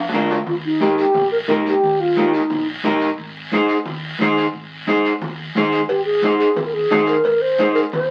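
A festive, danceable cumbia groove at 177 BPM in Eb major, opening on a drum fill with ringing metal-shell timbales and cowbell in the background that return at 5.9 seconds, as high-tuned congas, a raspy close guiro and a dark, round hollow-body fingered electric bass drive the rhythm under an up-front, slightly broken-up electric guitar and an airy, vibrato-laden alto flute with a crisp attack carrying the melody, all heard through moderate studio reverb and the crackle of a very old 78 rpm record in this short excerpt from a longer piece.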